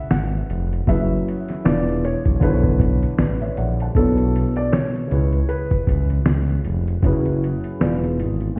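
Nostalgic and hazy, this excerpt of lo-fi hip hop drifts at 78 BPM in 4/4 with a swung sixteenth-note feel, set in B dorian. A soft, felt-muted upright piano carries the melody with audible action noise, filtered and trailed by analog delay, and falls away at 6.6 seconds while a dark, woody upright piano keeps up the accompaniment through cassette-tape coloring to the end. Beneath them, a smooth synth bass with a sawtooth-and-triangle tone holds sustained notes with gentle vibrato, and a compressed, pitched-down sampler-style drum kit brings a thumpy kick, fat snare, hi-hat and finger snaps. The harmony moves through chords such as C#m7, F#9sus4, E7b9 and Bm11. The whole mix sounds muffled, as if heard through a wall, with stone room reverb and vinyl crackle adding to its faded, vintage atmosphere.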